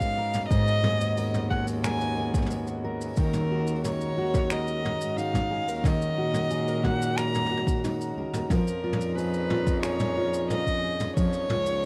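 Folktronica at 90 BPM in 4/4, hopeful and playful, this short cut from a longer piece sets an up-front, nasal violin melody with vibrato and portamento over dark, full-bodied fingerpicked steel-string guitar arpeggios, reedy harmonium chords with 12-bit sampler grit in the background, a veiled muted cello bass, a soft tape-warm electronic kick that stops at 11.3 seconds, and a brushed drum kit with finger snaps, hi-hat, shaker and toms, all moving through G#madd9, D#m and C#/E# in a rough home demo mix with light reverb.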